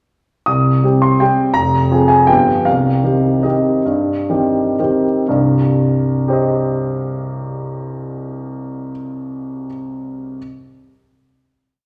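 A solo concert grand piano opens at 0.5 s with a short, nostalgic and bittersweet classical waltz in C minor, in 3/4 and tuned to A4 = 444 Hz. The tempo moves freely between 115 and 174 BPM with a rubato feel, and the music begins slowing down at 2.1 s. A single-line melody floats over a waltz bass that reaches deep into the low register, while the harmony moves from C minor through F minor and G7 before settling back on C minor. At 5.3 s the piece arrives at its final chord, which rings out with long sustain. The piano sits up front with an intimate, natural tone, and action noise from the instrument is audible. A wet recital hall reverb surrounds the sound, giving this brief, complete piece a sense of space.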